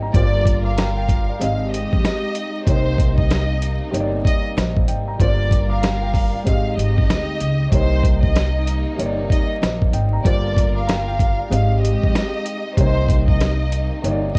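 Reflective and dark, this boom-bap hip-hop excerpt swings over a gritty, compressed sampler-style drum kit with a thumpy kick, rim clicks and hi-hat, while a woody pizzicato upright bass sits up front, a dark, boxy grand piano with a cassette tape effect plays a Gm7, Abmaj13 and Cm7 accompaniment, a close string section holds lush bowed chords in the background, and a distant violin section sings a soft-attack melody with vibrato, all coloured by worn, warbling tape and vinyl crackle.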